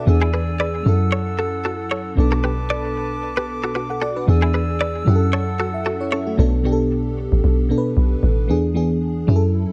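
A dry sound with very little reverb frames this smooth, mellow afrobeats fragment, cut from a longer piece and built on a lightly swung sixteenth-note feel. A deep, round log drum bass sits up front with a dark, percussive thump, while an FM electric piano layered with a soft pad fills in the harmony with a lush, dreamy, warbling tone, its detuned, vintage character thickened by chorus. A bright small flute group holds airy sustained chords with vibrato and a crisp attack until 6.4 seconds, and a clean, direct-recorded electric guitar plays a twangy, compressed, picked riff through analog chorus and delay until 6.2 seconds. The harmony cycles through E7, F#m7 and Bm7. In the closing stretch only the bass and electric piano carry on.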